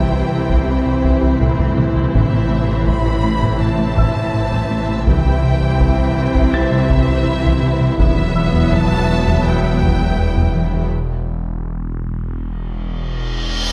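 Relentless and tense, this cinematic hybrid orchestral and electronic film score cue sets a focused, lush violin melody over a smooth second violin line, intense violas, background cellos, a very quiet double bass section, a very quiet mellow French horn section, a hollow, airy pad, a round analog bass riff, a swirling phased saw bass, a worn piano texture and very quiet, distant taiko drums entering at 0.5 seconds with a fill at 1.4 seconds, all moving through C, Am and Emadd9 in a concert hall reverb before a break at 10.9 seconds leaves the saw bass and a huge, dark reverse cymbal.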